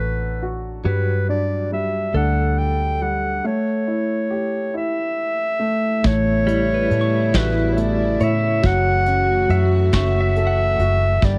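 Heartfelt and intimate, this acoustic folk-pop ballad in a lilting 6/8 opens with a warm, classical-style clarinet carrying the melody over a clear, woody upright piano and a dark, round, foam-muted electric bass, joined at 0.9 seconds by a clean, compressed electric guitar picking tremolo-tinged arpeggios. At 6.0 seconds, a mellow, distant French horn adds a second line with light vibrato, while soft-attack chamber strings hold sul tasto chords in the background and a vintage brush kit with a punchy kick and rolled-off top sits up front. The dry, close sound keeps the clarinet, bass and drums forward, and this excerpt is cut from a longer piece.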